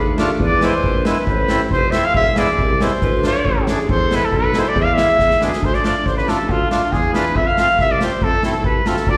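Soulful and festive, this short klezmer cut moves at 139 BPM in a straight 2/4, captured live through a venue's PA with the light, roomy reverb of a recital hall. A clear, classically styled cornet carries the melody up front with a slapback echo, while an airy, tongued tenor recorder with a distinct chiff sits in the background as a second line, dropping out at 5.6 seconds and returning only for a brief moment at the very end. A mellow, distant tuba anchors the bass, and a reedy accordion fills in the accompaniment from the middle of the mix, also touched by slapback echo. The polished street-band kit, with its medium-tuned snare and boomy kick, sits up front and plays a fill from 5.2 to 5.6 seconds that leads into the second section. The harmony keeps circling back to E, passing through Am and Dm, before settling onto Dm and then F in the closing bars.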